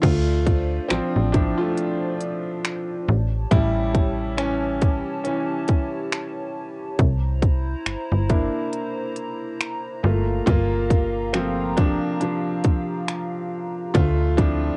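Moody and longing, this slow contemporary R&B excerpt sits at 69 BPM in D minor with a swung sixteenth-note feel, moving through Dm7, A7, C7 and Gm7 while a brilliant concert grand piano carries the spotlight with plate reverb across the full 14.8 seconds. Beneath it, a hollow, airy pad with chorus holds sustained chords, a snappy FM bass with a metallic attack anchors the low end, and an up-front trap kit adds a hard-clipped kick, crisp hi-hats, finger snaps and a crash cymbal. The home cassette recording, with its light reverb and dulled top end, gives the piano, pad and drums a tape-worn haze.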